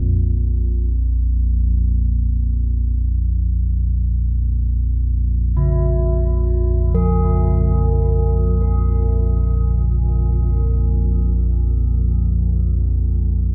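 Unsettling and ominous, this dark ambient drone excerpt in Bb minor unfolds in free time, built on a deep, rumbling drone that sits up front from the start, its triangle and sawtooth tones given a slow attack, long release, built-in reverb and a subtle chorus. At 5.6 seconds a bronze singing bowl enters further back, playing metallic, airy arpeggios struck with a wooden striker, its ringing tone carrying slow beating and a delay. The production is dark, with light reverb and small room ambience, and the tuning sits at A4 = 441 Hz.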